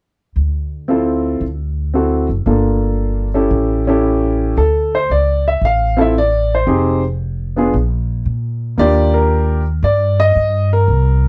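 A swung eighth-note feel at 114 BPM in 4/4 carries this short, late-night jazz piano trio fragment in D minor, cut from a longer piece. The upright bass opens at 0.4 seconds, plucked pizzicato on steel strings with a woody, growly, thumpy tone that sits up front in the low register. The concert grand piano joins at 0.9 seconds to carry the melody, its sound smooth and vintage with a deep low end, also placed up front. The harmony moves from Dm7 through D7, Gm7 and A7, then returns to Dm7 before darkening into Fm7, a brief stretch with the chords dropping away, and a final Ebmaj9. The moody atmosphere comes across through a dry, close 1970s-style studio sound touched with light reverb.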